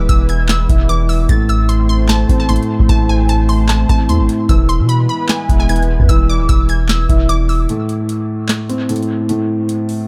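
Eerie, melancholic half-time trap in a dry, echo-heavy mix, where a crystalline wavetable pluck with chorus and dub echo carries the melody over a dark, boxy grand piano, a smooth, warbling analog pad in the background and a deep, sine-like 808 bass, while a booming drum machine with a deep kick, crisp snare, handclaps and metallic hi-hats drives the groove until pluck, pad and bass drop out at 7.7 seconds, leaving piano and drums for a short break in this excerpt cut from a longer piece.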